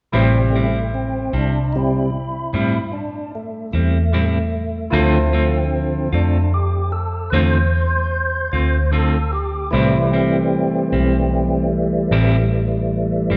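Slow, mournful blues in A minor at 50 BPM in a straight 12/8, where a fat, lightly overdriven tonewheel organ with chorus vibrato and a slow rotary speaker takes the solo up front over Am7 and Dm7 changes, backed by a clean, scooped electric guitar with tremolo, a bright, woody upright piano and a dark, round, foam-muted fingered electric bass, all bathed in the soulful wash of a reverberant recital hall in this excerpt cut from a longer piece.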